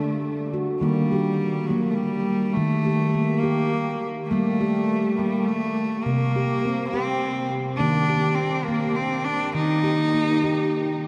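A handpan and a single bowed cello begin together. The handpan's stainless-steel tones, played with the fingertips, ring out in arpeggios from C3 to G4, while the cello carries the melody between F#3 and Eb4. This is meditative world music, gentle and unhurried, at 69 beats per minute counted in dotted quarters in a straight 6/8, tuned to A4 = 438 Hz. The cello's rich, earthy voice has light vibrato, a nasal bite and an airy bow, and both instruments sit up front with delay on each. A huge ambient reverb soaks the dreamy mix, while the harmony moves from D to Eb, then through Gm and C5 back to Eb, before this passage, cut from a longer piece, closes with the handpan at 11.1 seconds.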